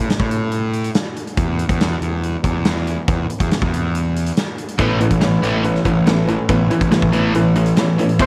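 A fuzzed, overdriven electric bass sits up front from the very start of this short classic rock excerpt, its picked low notes driving beside a big acoustic drum kit with hi-hat, punchy kick and a medium-tuned snare. The mood is sunny and driving in a straight 4/4, with bass and drums playing alone until 4.8 seconds, when the harmony opens onto an Aadd9 chord. At that point two overdriven electric guitars enter with a riff, one set in the background and the other very quiet. A brilliant grand piano and a shimmering, octave-doubled twelve-string acoustic guitar fill in the accompaniment behind them. At 8.2 seconds a clean, twangy lap steel guitar slides in up front with a single compressed high note just as the clip ends, and light reverb with a small room ambience frames the mix.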